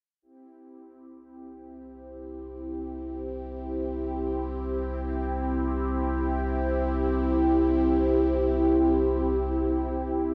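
Cosmic and expansive, this free-time ambient passage in C major is cut from a longer piece and rests on a single C chord. A phased analog pad sits up front from 0.2 to 10.3 seconds, holding sustained chords between C4 and G4 with a soft attack and a swirling, evolving, full-bodied tone built from detuned sawtooth and wave-folded triangle waves, colored by phaser and chorus. Beneath it, a round analog bass holds a deep, dark C2 with a fast attack, its sine and triangle tone sustained across the same span. Both parts fade in over the full stretch. A huge, wet reverb with an 8.6-second decay surrounds the sound, and a worn, warbling cassette-tape character adds a drifting pitch.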